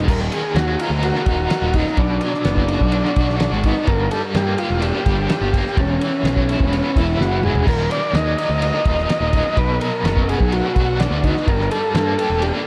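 A reedy, overdriven combo organ carries the melody with heavy vibrato and dub echo in this trippy, mysterious psychedelic rock excerpt at 126 BPM in 4/4, moving through a shadowy progression of Ebm, Bm, Gm and Esus2. Beneath it, a biting, double-tracked overdriven guitar plays a riff soaked in tremolo and dub echo, while a punchy fuzz bass sits up front. A cloth-damped, thuddy drum kit with dark cymbals, a fat snare and a tight kick holds a straight feel, with a fill at 7.2 s, all set in an echo-heavy mix with light reverb.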